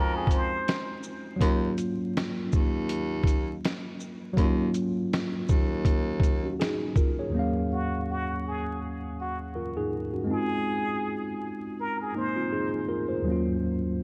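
Lo-fi hip hop in a melancholic, nostalgic mood, cut from a longer piece, in which a worn, slightly out-of-tune tine electric piano carries the chords throughout, a distant, roomy baritone saxophone with vibrato holds the bass until 6.6 s, a muffled, pitched-down sampler-style drum kit of thumpy kick, hi-hat, shaker and snare plays until 7.2 s, and a bright plunger-muted trumpet with a wah-wah tone, scooped notes and tape echo returns at 7.7 s for its jazz-style melody, the dreamy mix soaked in lush hall reverb and vinyl crackle.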